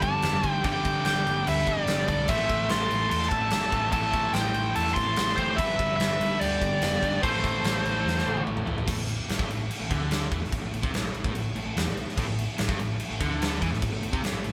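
Hard rock in A minor at 146 BPM in a straight 4/4, heavy and aggressive, cut from a longer piece and played live by a band in one room with light reverb. Up front, a bluesy overdriven lead guitar carries the melody between C5 and C6, shadowed in the background by a dark, fuzzy octave-fuzz lead guitar playing a second line, both stopping at 8.4 seconds. Underneath, two overdriven rhythm guitars pick the riff low in the register: a sludgy one with a warm tone runs throughout, while a bright cranked stack guitar drops out at 8.9 seconds and returns at 12.2 seconds. A round, punchy hollow-body short-scale bass anchors the low end, and a big acoustic drum kit sits up front with a punchy kick, medium-tuned snare, toms and bright crash cymbals, capping the opening G5 to Am to G to Am progression with a fill from 8.0 seconds. From 8.9 seconds the chords give way and the riff guitars, bass and drums drive on in a second section.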